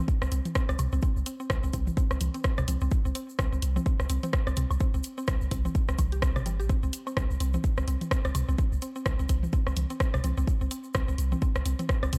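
A deep, pitch-dropping sine sub bass pumps up front beside a punchy, tape-warm electronic kick in this hypnotic, quirky minimal techno groove at 127 BPM with swung 16ths, as a woody, round FM synth pluck riffs between G3 and G4 through chorus and tape echo, a house drum kit adds hi-hat and rim clicks, a booming analog drum machine joins at 0.5 s with echoed rim clicks, toms and woodblock, and a grainy egg shaker sits close in the background, captured in a dry, gritty hardware recording with digital ambience.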